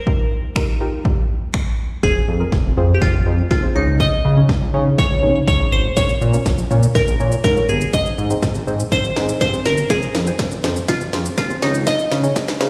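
Dance-pop with a bittersweet yet energetic mood, this short cut from a longer piece moves in a straight four-count pulse. A glassy wavetable pluck carries the melody from the very start, its crystalline, ring-modulated tone sitting up front with chorus, digital delay and slapback echo. Beneath it, a soft round pluck with a dark, detuned edge fills out the harmony, pumping against the kick, while a house drum kit with a punchy kick, cracking snare, crisp hats, shaker and finger snaps drives the groove. At 2.0 seconds a glossy, retro synth bass built from pulse and sawtooth waves enters with its own sidechain pumping, and the rest of the passage becomes one long build-up with a drum fill and a filter sweep as the chords move through Fm, Dbsus2, Bbm and Ab. The whole thing sounds like a live gig heard through the venue's PA, set in recital-hall reverb with thinned lows and lossy compression artefacts.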